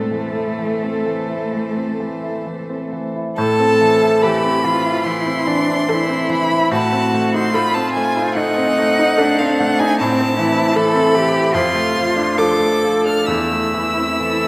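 A clear, close violin carries the melody with vibrato in this solemn, elegiac slow romantic movement for piano quartet, moving at 73 BPM in A minor with uneven, rubato beats. Beneath it the bowed cello sings a focused second line, a polished baby grand piano stands up front with its accompaniment, and a rich, smooth viola holds a steady note in the background. Harmony passes from A minor through a diminished chord at 6.7 seconds before settling back, all set in a wet concert hall reverb in this excerpt cut from a longer piece.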